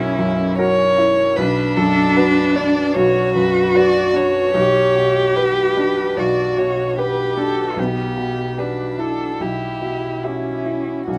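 A close, up-front sound with light reverb places a single bowed violin, a single bowed cello and a felt-muted upright piano in an intimate space in this short excerpt from a neoclassical work for piano and strings. The mood is fragile and reflective, moving at 75 BPM in 4/4 with a rubato feel. The violin carries the melody with vibrato, played sul tasto for a woody, dark tone, while the cello supplies a second line beneath it, also sul tasto with vibrato, its soft attack and smooth top keeping it close and gentle. The upright piano accompanies throughout with a mellow, muted timbre from its thin felt. All three parts play together from 0.0 to 11.2 seconds, passing from F#7/B through Bm and G/B to Em7/B, each chord resting on B in the bass.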